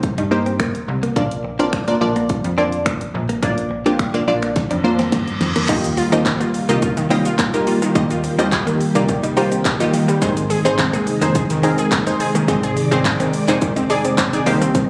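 Summery and upbeat, this dance-pop excerpt at 106 BPM in Eb major opens on punchy, detuned sawtooth chord stabs with chorus and sidechain pumping over a snappy, metallic FM slap bass and an up-front pop kit of fat snare, bright hats, punchy kick, handclaps, finger snaps and shaker, with a clean, direct-recorded electric guitar riff tucked in the background from 0.2 seconds. A drum fill and an electronic reverse cymbal lead at 5.7 seconds into a fuller section where a mellow, organ-like ensemble string pad sustains Ebadd9 and Ab chords and a lush, bright unison pluck runs arpeggios through digital delay, while a crisp, barely audible group handclap sits underneath. The sound is phone-captured in a club-like room with light reverb and digital ambience.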